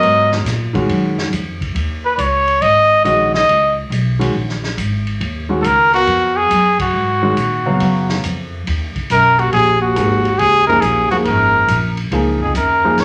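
A clear, up-front trumpet with light vibrato leads this spiritual, cool modal jazz excerpt over swinging short-sustain grand piano, a woody, growly pizzicato upright bass and a vintage kit with punchy kick and ride cymbal, all in a large studio reverb, with a band accent at 6.7 seconds before a mellow, close-miked bass clarinet with a soft subtone joins at 9.1 seconds.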